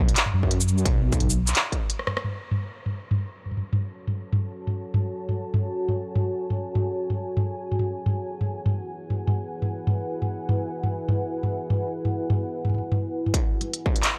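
Set in light reverb and a digital ambience, this dark, spacious excerpt of half-time drum and bass opens on a drop led by a deep, wobbling sawtooth bass with chorus that stops at 1.5 seconds and a brief distorted electronic kick, while an industrial drum kit of smooth hi-hat, handclaps, rim click, shaker and toms runs throughout and a moody, detuned pad with sidechain pumping holds sustained chords from 4.1 seconds.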